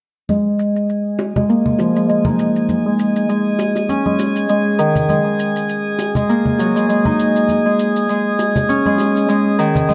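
A fingerpicked Celtic harp rings up front with arpeggios from 0.3 s, colored by tape echo and a filter sweep, alongside acoustic congas and bongos with a small-room feel and a layered, overdriven electronic shaker that carries its own filter sweep. At 1.2 s a calm, glassy texture of drifting sine overtones fades in slowly and sustains, shimmering with chorus and its own reverb. This swung, mystical organic downtempo passage, cut from a longer piece, moves through Fm7, D#7sus4, F#add9 and G#5 within a moderate concert-hall ambience.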